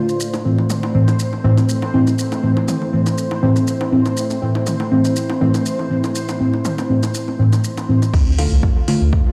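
Heard through a lush hall reverb and the stone echo of a bare room on a big sound system, this nocturnal, hypnotic dub techno fragment moves at 121 BPM with a light 16th-note swing over A minor. A mellow, up-front chord stab with chorus, phaser, tape grit and dub echo carries a filter sweep above a moody, detuned sawtooth pad in the background, while a resonant stepped-filter texture bubbles on C5 and a soft vintage rhythm box ticks metallic hats, shaker and crash beside overdriven electronic bongos and toms. At 8.1 seconds the harmony turns to D minor as a round sine sub bass and a tape-toned electronic kick arrive up front, with the bass, pad, stab and percussion all pumping under sidechain compression.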